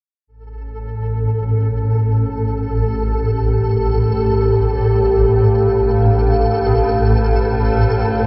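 A swarming, detuned drone sits up front from 0.6 seconds in this ominous, vast dark ambient excerpt in free time on D minor, joined by a flickering grainy texture, a deep, moody pad of sustained chords with chorus from 2.2 seconds, and a very quiet, eerie, inharmonic synth bell playing arpeggios from 6.0 seconds, all bathed in a cathedral-like reverb.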